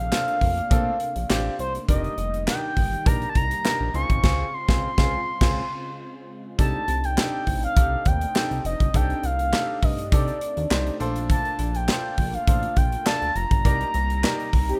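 A straight four-four groove from a punchy kick, medium-tuned snare, hi-hat, handclaps and crash cymbal drives this slick, funky early-eighties boogie funk, the acoustic kit sitting up front with an airy small-room polish. Underneath, a glossy, retro synth bass built from pulse and sawtooth waves, with a plucky filter and chorus, holds the low end, while a smooth, detuned analog pad sustains chords in the background. On top, an expressive, mellow synth lead with vibrato and chorus carries the melody up front. A bright, brilliant baby grand piano adds short-sustained accompaniment and steps out with a fill at 5.4 seconds. The harmony moves through lush extended chords such as Bbmaj9, F13sus4 and Cm69, with the band accenting together again at 13.6 seconds. At the very end, at 14.7 seconds, a round, brassy synth brass line with phaser appears just as this cut from a longer piece closes, all heard through a light studio reverb in a rough demo-style mix.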